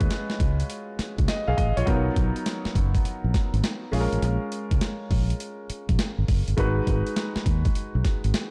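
Gritty, compressed breakbeat drums with a thumpy kick and medium-tuned snare sit up front from the start, alongside a round, dark fingered electric bass and an intimate concert grand piano with audible action noise, which accompanies through C#7, Bmaj7, A#m7 and G#m7 in a confident, punchy new jack swing R&B groove with a swung sixteenth feel and a warm, shadowy ambience, cut from a longer piece.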